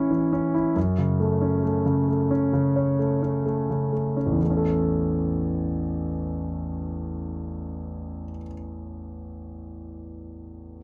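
Heartfelt and tender, this short pop piece cut from a longer work moves at a slow 62-70 BPM in A major, with a concert grand piano playing the accompaniment from A1 to C#5 across the full 10.8 seconds. The piano sounds intimate and polished, with deep bass, long sustain and audible action noise, sitting up front in a dry, close 1970s-style studio sound with moderate booth ambience. The tempo eases through the opening 4.4 seconds as the harmony passes from A to F#m, then returns to A at 4.4 seconds as a new section begins.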